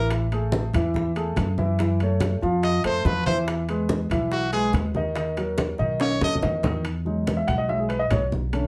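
A forceful, up-front trumpet with scooped notes and light vibrato opens this lively, sunny Afro-Cuban jazz excerpt at 142 BPM over a natural-sounding grand piano, woody pizzicato upright bass, bright low-tuned congas, ringing metal-shelled timbales and tight high-tuned bongos in the background, all in a reverberant studio heard from further back, until a drum fill at 6.0 seconds hands over to a piano solo from 6.8 seconds as the chords move from A5 through F#m7, Emaj7 and B7 back to Emaj7.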